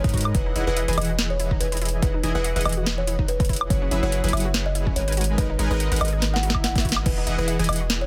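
Set at 143 BPM in 4/4 with a half-time feel and a light 16th-note swing, this playful, lush future bass fragment in E lydian rides on a punchy, overdriven electronic kick and a trap kit of sharp snare, metallic hats, crash, and woodblock, with a drum fill arriving at 6.2 seconds. A deep, sine-toned 808-style bass holds long, decaying notes up front, while a full-bodied, detuned supersaw stab carries the riff, both pumping with sidechain compression. On top, a woody, hollow-sounding kalimba plays the soft melody with digital delay, and a wave-folded unison pluck spins arpeggios in the background through a cassette-tape haze and delay. The harmony moves from Emaj9 through F#9sus4 and G#m9 before returning to Emaj9 at 7.1 seconds, the point where a faint electronic swell, present beneath the fill from 6.4 seconds, comes to an end. The mix is dry and dense, with a heavily limited modern master.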